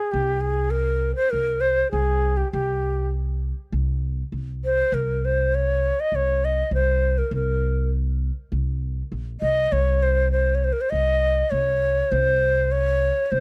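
The sound is dry and close, with a small room's ambience, like a 1970s studio session. This short passage from a longer Turkish makam ensemble piece feels hypnotic and soulful, moving in a straight, even four. An end-blown ney of reed cane carries the melody from the very start, its breathy, bright, reedy tone shaped by vibrato and tongued notes between G4 and Eb5. An acoustic upright bass with steel strings joins at 0.1 seconds, played pizzicato with a woody, warm voice on low notes from Bb1 to C2. Both instruments sit up front in the mix and continue together until the passage is cut off at 13.4 seconds.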